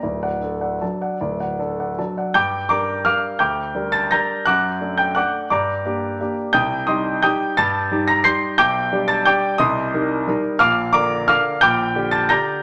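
A solo concert grand piano, warm and up front with a deep bass, carries this nostalgic, wistful classical waltz in 3/4 with a flexible rubato feel, ranging from D1 to C7. After a brief opening passage, a new section begins at 2.4 s and moves through G minor harmonies toward Cm7 and Bb before settling on Gm/Bb. The piano sits in a moderate, large studio reverb, and this 12.6-second fragment is cut from a longer piece.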